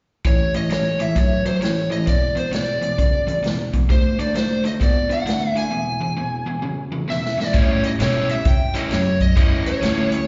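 A picked lead guitar through a small cranked amp, up front with overdrive, slapback echo and analog delay, sings a soulful melody over a laid-back electric blues shuffle in A major at 132 BPM, backed by a dark, compressed overdriven guitar riff and a swinging big-band drum kit with a punchy kick and medium-tuned snare, with a break at 5.7 s and a drum fill at 7.1 s leading to a woody pizzicato upright bass entering at 7.5 s, all of it heard as a live gig through the venue's PA with recital hall reverb and a muffled top end, cut from a longer piece.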